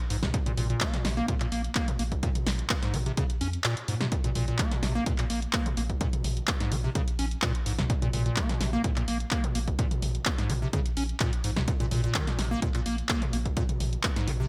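A squelchy, hollow square-wave acid bass riff with resonant filter plucks, lush chorus and delay sits up front in this trippy, driving acid house excerpt, over a deep, round sine sub bass that pumps with sidechain, punchy analog drum-machine handclaps, hi-hat, snare and toms, and an electronic kick re-recorded in a large room that drops out from 3.6 to 4.1 seconds, all in light reverb.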